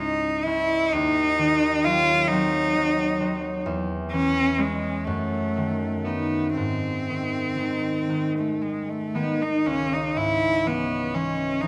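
Romantic classical music for cello and harp, elegiac and yearning, moves in a slow, rubato 6/8 at about 38-45 BPM in C# minor, tuned to A4 = 437 Hz. A single bowed cello carries the melody up front with a rich, focused tone and vibrato, while the concert harp accompanies with warm, fingerpicked, ringing notes. Captured with close, detailed microphones in a moderate concert hall reverb, this fragment of a longer piece travels through diminished harmonies to a G# chord before settling back on C# minor at 9.7 seconds.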